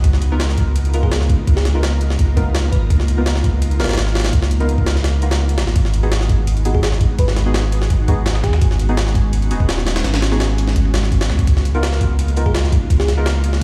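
Drum and bass with a jungle edge at 168 BPM, this atmospheric, raw excerpt sets a gritty, pitched-up sampler kit with a thumpy kick and high-tuned snare up front beside a thick, saturated sub bass, while an ethereal, warbling pad holds sustained chords in the background, deep mellow stabs with chorus and dub echo move from C#13 to G#m7 and back, a bell-like FM electric piano sparkles through brief phrases from 1.0 s, a very quiet dusty soul kit adds hi-hat and snare from 5.8 s, and the whole sits in a large, bare-room reverb.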